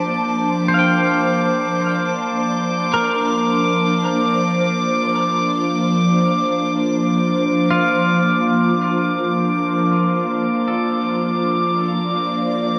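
A luminous, weightless ambient passage in free time opens on an ethereal, airy pad holding sustained chords in Bb major, its detuned, slow-blooming tone shimmering through ensemble chorus, reverb and phaser near the front of the mix. From the same opening moment, a twangy, clean electric guitar picks arpeggios beneath it at a lower level, softened by lush chorus and a diffuse ambient delay. Up front alongside the pad, a glassy texture of drifting overtones sits high on a single D6, calm and sustained with its own chorus and reverb, also present from the very start. The harmony rests on a Bbmaj9 chord before settling onto a plain Bb at 10.0 s, where the piece moves into a new section. A wet, lush hall reverb and a cassette-tape character give the whole fragment, cut from a longer piece, a hazy, suspended feel.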